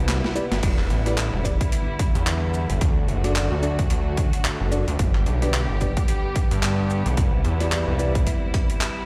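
A gritty, aggressive sawtooth synth bass sits up front with tube saturation and a resonant filter pluck, driving this swaggering glitch hop excerpt at 110 BPM in E minor with a 16th-note swing. An overdriven, pitched-down boom bap sampler kit with a high-tuned snare, handclaps, hi-hat, shaker and crash enters at 0.1 s, and a punchy, tape-warm electronic kick joins it at 0.6 s, while a very quiet electronic swell and a drum fill open the piece. Behind them, veiled con sordino strings hold sustained chords through 12-bit sampler grit and sidechain pumping, and a mellow tine electric piano adds stabs with delay in the background over a Cmaj7, Em7, D, G progression, all in a big, bare room with large studio reverb.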